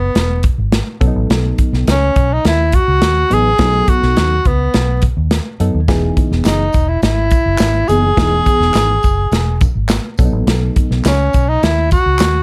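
A straight 4/4 groove at 104 BPM drives this danceable, uptempo 1960s-style soul piece in E major, where a punchy acoustic drum kit with a medium-tuned snare sits up front alongside a dark, round, foam-muted fingered electric bass beneath a breathy, intimate tenor saxophone melody with light vibrato and a soft attack. A reedy, worn, slightly out-of-tune electric piano with phaser joins at 1.0 s, and from 5.9 s faint high-tuned congas and background tambourine and handclaps add sparkle over chords moving from E to B7 and Emaj7, all with little reverb.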